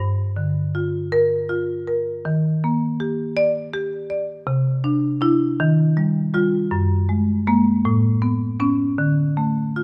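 Hypnotic and reflective, this short passage from a contemporary classical piece for solo marimba moves in a rubato 6/8 at about 53 BPM, its medium hard mallets drawing a woody, dark yet smooth percussive tone from padauk bars that sits up front through close, detailed microphones in a moderate recital hall reverb, while the harmony drifts from Gm7 through Ebmaj7, Cadd9, Ebadd9, F#add9 and Aadd9 to settle on D5 at 9.0 seconds.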